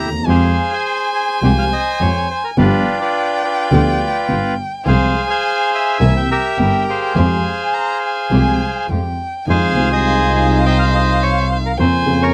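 Tango in F minor at 104 BPM in 4/4, played with a rubato feel and a tense, melancholic mood in this short passage cut from a longer piece. A reedy, vintage bandoneon carries the melody up front, its band-limited tone sitting beside a single bowed violin whose dark, expressive second line glides with portamento and vibrato above it. Underneath, one player's bowed double bass sounds warm and intimate, drawn sul tasto with an airy bow and light vibrato, close and prominent in the mix. A mellow, woody upright piano with a boxy character enters at 0.1 seconds to supply the accompaniment, and at 0.3 seconds a chamber string section joins in the background with nasal, gut-string stabs in a period style. The harmony moves from Fmadd9 through G7 and C7 before settling on Fm7 and closing on Bbmadd9/F, all captured in a dry, close 1970s-style studio sound with light reverb.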